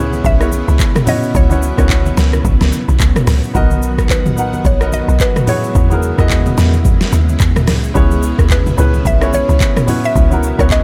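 Relaxed and soulful, this amapiano excerpt moves at 109 BPM in 4/4 with a gentle 16th-note swing, cycling through C#m7, F#7sus4, Bmaj7 and E69 chords. A woody, punchy log drum bass with a fast attack and decaying tail sits prominently underneath, matched in level by an up-front deep house kit of deep kick, deep snare, metallic hi-hats, handclaps, rim clicks, shaker and toms that comes in at 0.1 seconds. A grand piano with a short sustain plays the accompaniment, while a lush vintage string machine holds sustained sawtooth chords with a sub octave, soft attack and ensemble chorus further back. The melody comes from a round, mellow mallet-like synth pluck treated with chorus, phaser and digital delay. Very quiet congas with a thin, low-tuned skin and hard hands add bright acoustic texture until 10.4 seconds, and the whole mix is dry, with little reverb.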